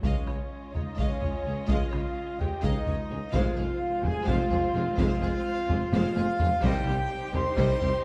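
Heavy, saturated taiko drums drive this relentless, heroic cinematic orchestral excerpt in 7/8 at 254 BPM, where close-miked trumpet stabs and distant, roomy French horn chords ride over a bass of bowed cellos, woody double basses and a punchy tuba, while a very quiet, expressive violin melody, a second violin line with portamento, mellow flutes, rich violas and a focused string pad sit in a dark recital-hall reverb, with round, calf-headed timpani entering at 3.4 seconds as the harmony moves from Dbadd9 through Fm to Cm.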